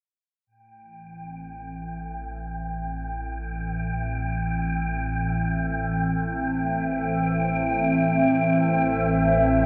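Floating in free time, this short passage of ambient, sequencer-driven space music feels expansive and hypnotic, resting on a single A minor chord in a tuning of A4 = 445 Hz. A phased analog pad enters at 0.5 seconds and fades in with sustained chords spanning A2 to E5. Its swirling, nasal, detuned tone sits up front, coloured by phaser and chorus. At 1.0 seconds an airy, breathy noise layer tuned to G5 drifts in like wind, softened by its own dark built-in reverb. From 1.5 seconds an analog drone holds a low A1 underneath, its vintage, warbling pulse-wave tone also fading in behind chorus. A wet plate reverb and a dark, warm production wrap the whole cut, which is taken from a longer piece.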